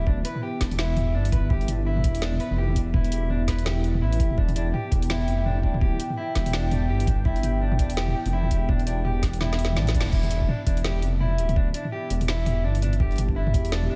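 Lightly reverberant and cinematically dark, this half-time drum and bass excerpt sets a moody, detuned analog pad with chorus and sidechain pumping and a slightly broken-up picked electric guitar arpeggiating through diffuse ambient delay over an up-front, rumbling detuned saw bass, a knocking tape-warm electronic kick and an overdriven, layered kit of woody snare, bright hi-hats, crash and toms, whose fill at 9.4 seconds leads into a band accent at 10.0 seconds.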